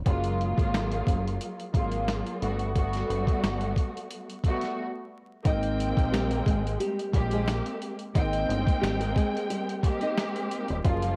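This soulful boom-bap hip-hop excerpt opens on a lush, bowed string section with vibrato and portamento, filtered and given a cassette-tape haze, alongside a dark, round fingered electric bass with transformer saturation. A pitched-down, gritty sampler-style drum kit arrives at 0.1 seconds with a thumpy kick, medium-tuned snare and hi-hat, moving at 89 BPM in 4/4 with a light swing on the 16ths. The harmony drifts through rich major-ninth chords in Ab major, with a brief break at 4.8 seconds before the second section. At 5.5 seconds a bright, fingerpicked nylon-string guitar takes the melody, its finger squeaks audible through filtering, tape coloring and analog delay. The whole piece sits in a homespun cassette recording with vinyl crackle and a light studio reverb, giving it a warm mood.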